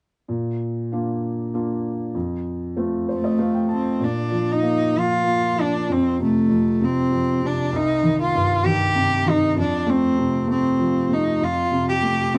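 In a straight 3/4 at 97 BPM, this heartfelt, nostalgic acoustic folk-pop ballad in Bb major opens at 0.3 seconds with a soft, felt-muted upright piano laying down an intimate, mellow accompaniment over chords moving from Bb to F. At 3.1 seconds a single bowed cello takes the melody up front, its tone rich and earthy with light vibrato, a biting edge and an airy bow, as the harmony passes through Cm and back to F. The short cut sounds like a band playing live in one room, softened by light reverb and a gentle, rounded top end.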